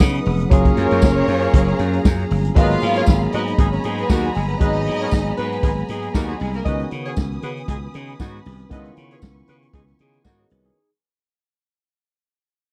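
Danceable and driving, this short disco excerpt moves at 117 BPM in 4/4 with a light sixteenth-note swing, set in G# dorian and tuned a little below standard pitch. An acoustic vintage drum kit sits up front with a punchy kick and medium-tuned snare alongside hi-hat. A growly slap bass carries the low end, while a jingly tambourine stays in the background. A barky tine electric piano, bright and clean through a combo amp, supplies the accompaniment, and a tight horn section with octave doubling punctuates with smooth-topped stabs. A lush violin section plays a second line until about 6.6 seconds, alongside focused, bowed string-section chords that sustain in a higher register. The harmony moves from C#9sus4 through F#maj9 to G#m9 at 2.6 seconds, where a fade-out begins and runs to the end, all captured with a dry, close 1970s-style studio sound in a small room.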